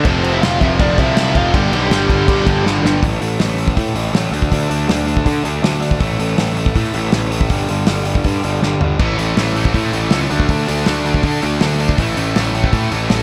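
Raw and angry, this dry, fast punk rock excerpt in A minor charges along at 161 BPM with a bright, overdriven guitar riff running throughout, joined for the opening 3.0 seconds by a very quiet tight distorted guitar and, from 0.1 to 2.6 seconds, a dark, compressed lead melody, while a double-tracked high-gain guitar riffs in the background, drops out after that intro and returns at 9.0 seconds, all driven by a growly, punchy fuzz bass and a loose, up-front small-room drum kit with dark cymbals and a tight kick that throws in quick fills.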